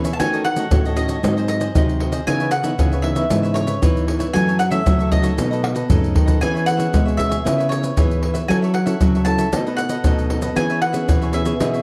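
A dry, close 1970s-style studio sound with small-room ambience frames this joyful, playful samba and choro excerpt, where a round, double-strung picked mandolin carries the melody over a crisp, bright cavaquinho, a fingerpicked classical nylon-string guitar with audible finger squeak, and a second nylon-string guitar holding the bass in the background, while up-front maracas, pandeiro, tight surdo and tamborim, struck with hard hands, drive the groove and break into a drum fill at 5.6 seconds.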